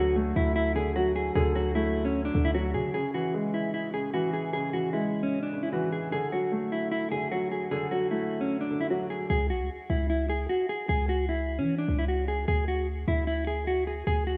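Eerie and melancholic, this short cut from a longer trap-leaning hip hop piece moves with a heavy half-time feel. A clean, dark electric guitar carries the melody up front, its fingered tone softened by a low-pass filter and trailed by digital delay. Beneath it, a dark concert grand piano with a deep low end plays accompaniment until 9.3 seconds, also muffled by a low-pass filter. A boomy, sine-based 808-style bass with a noise layer and a fast, decaying attack appears at the start, drops out at 2.9 seconds, and returns at 9.3 seconds once the piano has stopped. The harmony shifts between D and C# minor and settles on a D(#11) chord near the close. A lush hall reverb surrounds the rough home-demo mix, giving the sparse parts a haunting sense of space.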